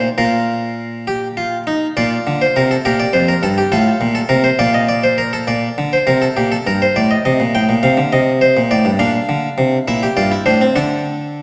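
A round, plucked Flemish-style harpsichord on a single set of strings sits up front as the sole voice in this solemn yet driving baroque-style three-part fugue in Bb major, moving at 68 BPM in a straight 6/8 and tuned to A4 = 439 Hz. Spanning F2 to G5, the solo line passes through harmonies such as Gm, Cm, Adim/C and Em7b5 before reaching Asus4/D at 10.8 seconds, with its opening material returning at 5.5 seconds. A dark, warm production and a wet scoring-stage reverb frame this brief excerpt cut from a longer piece.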